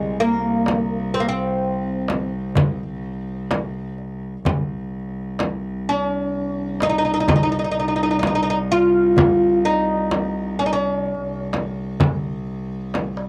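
A small-room home cassette recording with a moderate reverb catches a soulful, melancholic Arabic maqam ensemble in C maqam bayati at 127 BPM in 10/8, where a bright, woody, plectrum-plucked fretless oud sits up front carrying the melody from Ab3 to F4 over a clear, focused bowed cello drone on C2 with vibrato, joined at 0.7 seconds by a deep, compressed, saturated frame drum struck with hard hands and a small, band-limited clay darbuka played with soft hands in the background, before a drum fill at 13.0 seconds closes this cut from a longer piece.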